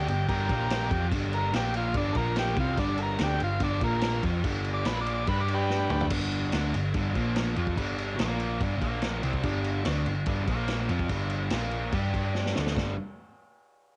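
Swaggering and raw, this garage rock cut, taken from a longer piece, drives along at 144 BPM in a straight 4/4, with the harmony swinging between Bb5 and G5. An overdriven combo organ, buzzy and touched with light vibrato, carries the melody up front as a solo from the start until 6.1 seconds, its tone roughened by cassette tape. A bright, double-tracked fuzz guitar pushes a compressed, distorted riff through nearly the whole excerpt, while a dark, round hollow-body short-scale bass, picked and amped, holds down the low end. The vintage kit sits forward with a punchy kick, medium-tuned snare, toms and dark crash cymbals under a rolled-off top, and drum fills mark the turns around 5.7 and 12.4 seconds. The whole thing has the feel of a home cassette recording with moderate booth ambience.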